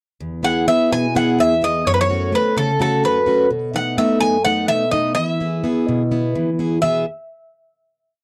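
A relaxed, warm Greek folk piece for a bouzouki band, moving briskly at 254 BPM in eighths through a straight 7/8 metre in E major. The bouzouki carries a modal, ornamented melody up front, its bright, metallic double strings with some octave-doubled courses ringing over a picked, plugged-in steel-string jumbo guitar, whose woody, full-bodied tone from old strings supplies oompah bass notes and chord figures through E, F#m and B7. The short piece closes on a final chord from 6.8 seconds, captured in a dry, close 1970s-style studio sound with light reverb.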